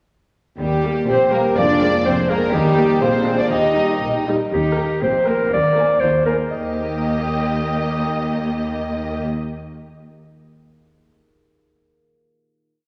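In a straight 2/4 at 123 BPM, this playful, whimsical film cue in Eb major has a magical, quirky air. A lush, distant violin section carries the tune, doubled in unison by a clear clarinet, while a second, smooth violin section plays a counter-melody and a mellow bassoon adds its own counter-line from 1.1 to 4.3 seconds. Dark French horns hold sustained chords until 4.4 seconds, bowed double basses and pizzicato cellos carry the bass, violas add pizzicato accompaniment in the background, and a very quiet harp rings out rocking broken chords until 10.4 seconds. A brief coda settles onto a final Eb chord at 6.5 seconds, bathed in the generous reverb of a concert hall.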